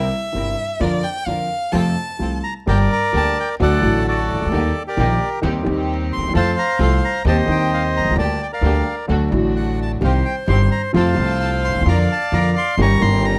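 Tango in G minor at 130 BPM with a tense, dramatic, rubato feel: an expressive bowed violin with vibrato and portamento opens up front until 2.4 s, when a reedy, bright, dry bandoneon takes the melody close and forward, over an intimate vintage grand piano with audible action noise and deep bass, a dark, woody pizzicato upright bass, and distant gut-string stabs from a period-style chamber string section in the background, all captured by close, detailed microphones with light reverb and vinyl crackle in this excerpt cut from a longer piece.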